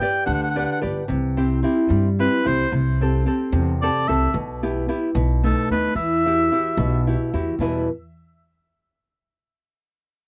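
Wistful and romantic, this Italian folk serenade in 6/8 sets a classical-style solo oboe with light vibrato and a smooth top, touched by tape echo, over small-sounding fingerpicked nylon-string guitar with audible finger squeak and a cassette tone, while a dark, woody, thumpy pizzicato upright bass on gut strings enters at 0.3 seconds, all three up front in a modest booth ambience on a home cassette recording.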